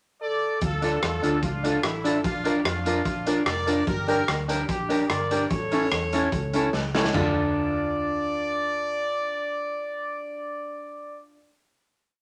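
A clear, punchy horn section opens the piece at 0.2 seconds with a mischievous motif-based melody partly doubled in thirds, joined by a raw, gritty garage drum kit playing a driving ska beat with side-stick backbeat, a dark, foam-muted walking electric bass, a twangy guitar at the edge of break-up chopping the off-beats alongside a woody, slightly detuned upright piano, all moving through Dm, Bb, Gm and A at 147 BPM in D harmonic minor until a drum fill at 6.7 seconds leads into a held final D minor chord as the drums stop.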